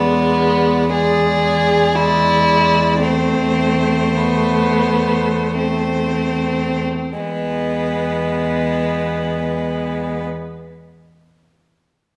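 Serene and tender, this excerpt from a slow romantic classical movement for string quartet drifts in rubato 3/4 at 34-59 BPM in E major, slowing down through its first 7.2 seconds as a clear, close first violin sings a smooth, even melody with vibrato over a rich second violin line placed up front, a distant viola accompaniment, and a cello holding a low E with soft attack, portamento and expressive vibrato, each part bowed by a single player in the wet reverb of a scoring stage.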